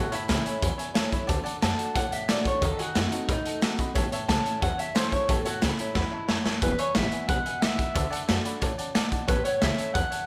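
Rockabilly at 180 BPM in A major, rowdy and upbeat, cut from a longer piece: a twangy, slightly broken-up electric guitar through a small old amp carries the melody with tape echo, over a woody, thumpy pizzicato upright bass on gut strings. A raw garage drum kit sits up front with a boomy kick, gritty saturation, a rolled-off top and a pumping small-room sound, and it breaks into a fill from 6.0 to 6.6 seconds. A bright upright piano with audible action noise and long sustain adds accompaniment, while a full-bodied picked dreadnought acoustic guitar, finger squeaks and all, stays in the background, everything wrapped in light reverb and small room ambience.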